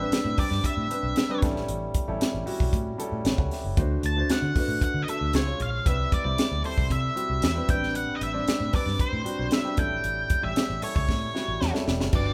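A straight 4/4 groove at 115 BPM drives this polished 1980s jazz-funk pop excerpt in A dorian, its tight funk drum kit sitting up front with bright cymbals, a high-tuned snare and a tight kick, alongside a dark, foam-muted fingered electric bass that sounds round and amped. Over it a distorted octave-fuzz lead guitar carries the melody, picked and forward in the mix, while an intimate concert grand piano with audible action noise and deep bass fills out the chords, moving from Am11 through A7, D7 and a C#maj7 to Cmaj7 shift. The band plays live in one room bathed in a wet, large studio reverb, giving a nocturnal, slick mood, with a drum fill from 11.1 seconds and a grand piano fill from 11.3 seconds closing the passage.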